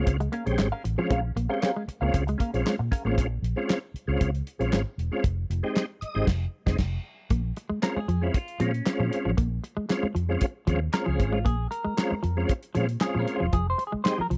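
A straight 4/4 funk groove at 116 BPM in Bb dorian sets a hypnotic, funky mood in this short cut from a longer piece, driven by a cloth-damped, thuddy drum kit with a tight kick, medium-tuned snare, dark cymbals, hi-hat, handclaps and crash, sitting up front with a rolled-off top. Beneath it, a vintage muted fingered electric bass plays a round, punchy, foam-muted line from E1 to Bb2, while a tonewheel organ adds smooth stabs through chorus vibrato and a fast rotary speaker. A hollow-bodied semi-hollow electric guitar plays a compressed riff with a warbly pitch drift, and a clean electric guitar with wah and subtle chorus provides accompaniment; both drop out after 3.1 seconds and return for the second half. The harmony moves from Bbm7 to Fm7, a band accent lands between 6.3 and 7.3 seconds, and from 7.3 seconds the clean guitar takes a solo to the end. The sound is a dry, close 1970s-style studio recording with small room ambience.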